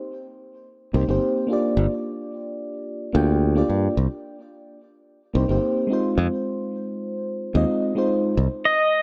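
A clean, compressed pedal steel guitar steps forward at 8.7 s with a single high Eb5 note, closing this smooth, wistful sunset chillout excerpt in C minor at 109 BPM. Before that, from 0.9 s, a round, soft FM electric piano with chorus and digital delay drifts through Cm7, Gm7 and Fm7, while a bright, growly fingered electric bass sits up front beneath it. A moderate plate reverb gives the sound a gentle sheen.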